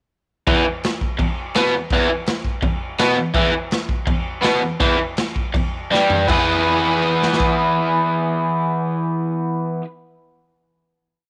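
Garage rock with a raw, rowdy mood, this short piece charges along at 164 BPM in E major, led by a bright, overdriven, double-tracked electric guitar playing a picked octave riff on an E5 chord, up front in the mix. A gritty, saturated drum kit with a punchy kick, medium-tuned snare, dark cymbals and toms pounds out a garage stomp groove in a small, pumping room, adding a fill from 5.9 to 6.3 seconds. At 6.3 seconds the guitar lands on a final E chord that rings until 9.8 seconds, while the drums stop at 7.5 seconds, all under light reverb and studio ambience.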